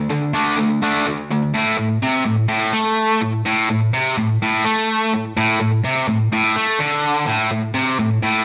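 A dry, close sound puts a lone distorted electric guitar up front, bright and overdriven with a slapback echo and a double-tracked, picked attack. This heavy, driving rock excerpt in A minor moves at 126 BPM in a straight 4/4, the guitar ranging from A2 to D4 as it opens on a D5 power chord before settling onto A minor at 1.6 seconds and holding there through 8.4 seconds.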